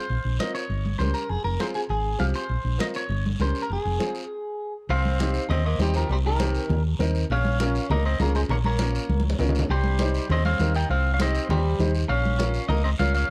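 A bright, twangy electric guitar, picked and slightly broken up with spring reverb, opens this fiery cumbia excerpt, carrying the melody over a round, dark hollow-body bass that sits up front. Hard-handed, damped congas with a thin, vintage skin and a raspy, saturated guiro fill out the percussion, while a woody upright piano with long sustain supplies the chords. After a brief stop at 4.3 seconds, a growling tenor saxophone enters at 4.9 seconds with a gritty second line, clear in tone and touched with light vibrato. The harmony moves through suspended, diminished and minor chords in the opening passage, then settles into an alternation of Cm and Bbm once the saxophone arrives. The sound is dry and close, a passionate 1970s-style studio recording with light reverb.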